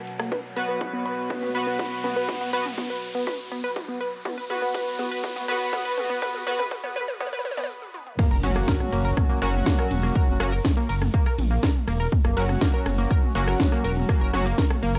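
A dry, gritty hardware sound with transformer saturation and light reverb frames this dramatic, melancholic melodic techno, where a tight sequenced synth arpeggio and an edgy, nasal sync-sweep polysynth stab ride sidechain pumping over a punchy kick and a house kit of cracking snare and metallic hats. A resonant, overtone-sweeping drone sits in the background under a riser as the opening build-up unfolds with a filter sweep and drum fills, then stops at 7.7 seconds. At 8.2 seconds the drop lands with an electronic impact and a deep, rumbling detuned saw bass that stays up front to the end of this cut from a longer piece.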